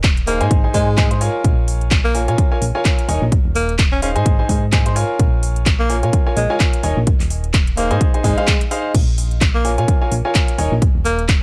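This dry, gritty hardware recording has a cassette-tape grain and a touch of digital ambience, cut from a longer piano house track at 128 BPM in Bb minor with a swung 16th feel and a soulful, energetic mood. An up-front, punchy electronic kick and a house kit of crash, handclaps and metallic hi-hats drive the groove, while a round, dark FM bass with tube saturation and sidechain pumping anchors the low end. From 0.3 s a clear, polished baby grand piano riff, pumping and echoed by analog delay, cycles through Ab, Bbm7 and Eb7sus4 alongside a close-miked tenor saxophone solo whose vibrato and scooped notes carry a jazz inflection through its own analog delay.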